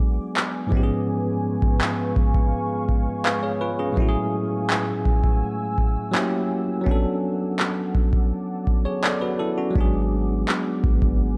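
A booming analog drum machine lays down an overdriven deep kick and handclaps at a straight 83 BPM in 4/4 under this sensual, late-night contemporary R&B excerpt in F# minor, where a bell-like, bright tine electric piano sits up front over a moody, detuned sawtooth pad with chorus, built-in reverb and sidechain pumping, moving through chords such as G#m7b5, F#m9/A and Bm7 before a clean, sine-toned 808-style bass enters on G#1 at 9.8 s.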